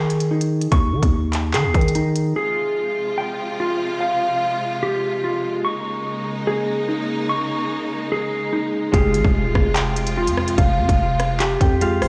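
This ominous, cold drill excerpt sounds as if it were played on a big sound system in a bare room, with a stony reverb hanging around the parts. It moves at 146 BPM in 4/4 with a half-time feel in F minor, alternating between Eb7sus4 and Fmadd9. A mellow, dark, clean electric guitar plays fingered arpeggios up front throughout, compressed and shaded by a low-pass filter and digital delay. A growling, buzzy 808-style bass with a fast attack and decaying tail sits beside an electronic drill kit of hard-clipped kick, crisp hi-hats, handclaps and rim clicks, re-recorded in a small room. Both drop out as a lush, distant symphonic string section enters at 2.4 seconds with bowed, vibrato-rich sustained chords. Bass and drums return at 8.9 seconds, joined by a ringing, fingerpicked concert harp whose acoustic tone is softened by a low-pass filter.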